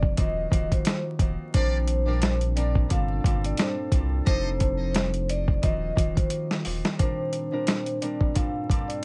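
Boom-bap hip-hop at 88 BPM in 4/4 with a swung sixteenth feel, this nostalgic yet confident excerpt from a longer piece sits in Bb major with tuning a touch above standard. A gritty, compressed sampler-style drum kit sits up front with a thumpy kick, medium-tuned snare and hi-hat, and a drum fill at 6.3 seconds leads into a new section at 7.0 seconds. Underneath, a deep, thick saturated sub bass with a fast attack holds the low end until 6.8 seconds. A fingerpicked concert harp rings out acoustic accompaniment while a metallic vibraphone, played with medium mallets and a slow motor vibrato, carries the melody, both filtered at top and bottom. From 1.6 to 4.5 seconds a muted trumpet section adds brilliant, buzzy, close-miked jazz stabs, thin and softly placed, with light vibrato and tape echo. The harmony moves through Ebm6, Bb69, Gm11 and F7, and the dry sound is coated in vinyl crackle.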